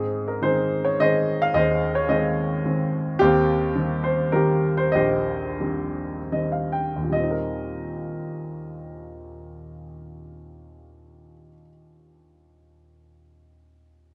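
Warm and hopeful, this lyrical classical fragment for solo baby grand piano moves in a gentle three-beat metre with a flexible, rubato feel. The piano sounds natural and up front in light reverb, broadening from 3.2 seconds and adding a short fill from 5.9 to 7.1 seconds before the music moves into a new section.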